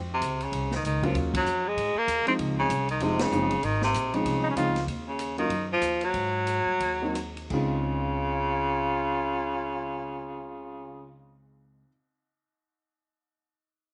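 Small-group swing and bop jazz in D-flat major, relaxed and swinging at roughly 164-194 BPM in 4/4, cut from a longer piece. A warm, vintage-toned baritone saxophone carries the melody up front, with light vibrato, scooped notes and a slapback echo, over a woody pizzicato upright bass and a natural-sounding baby grand piano that comps from 1.0 seconds. An open acoustic drum kit with dark cymbals, a medium-tuned snare and a boomy kick sits low in the mix and drops out at 7.6 seconds, after the band hits accents and the tempo slows through the middle stretch. A mellow, breathy trumpet with a soft attack and its own slapback echo offers a brief touch at 4.4 seconds, then joins as a second line from 7.5 seconds as the harmony settles back on D-flat major 9. The sound is dry and recorded outdoors, with little reverb and a muted top end.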